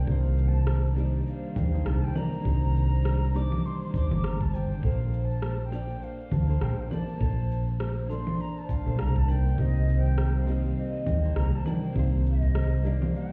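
Relaxed and smooth, this sunset chillout excerpt moves at 101 BPM in 4/4 with a gentle sixteenth-note swing, drifting from Cm9 to Bbmaj9 and back to Cm9. A distant, pure-toned baroque flute carries the melody with vibrato and an unsteady, soft-attacked breath, its line echoed by delay, while a dark, full-bodied nylon-string guitar, thumb-plucked with a deep classical tone, accompanies it through its own delay. Behind them sits an airy, breathy pad holding sustained chords with a slow attack, long release and chorus, and a buzzing, ringing kalimba adds woody arpeggios through delay in the background. The low end is anchored by an up-front, growly, round fretless electric bass with a hollow, amped darkness, alongside a gritty, thumpy sampler-style kick drum re-recorded in a small room. Layered electronic cabasa, rim click and congas carry an overdriven edge and a large-room sound, and the whole mix comes across muffled, as if heard through a wall into a club, before a break at 13.1 seconds.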